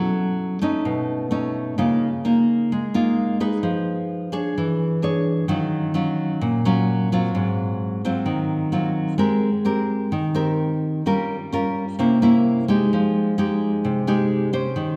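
Sophisticated and relaxed, this bossa nova excerpt features a lone nylon-string guitar, fingerpicked in a classical style and placed up front in the mix. The acoustic tone is warm, ranging from Ab2 up to Db5, and it sits inside a lush concert hall reverb with a long, glowing tail. The opening passage moves through rich extended harmonies such as Gbm7, Cb9, Db69 and Ebm9, drifting with a gentle straight feel in 4/4. At 9.2 s the music settles into a new section that opens on Abmaj9 before passing through Gm7b5 and C7b9 to arrive on Fm9 at 12.9 s. The clip ends at 15.0 s, cut from a longer piece.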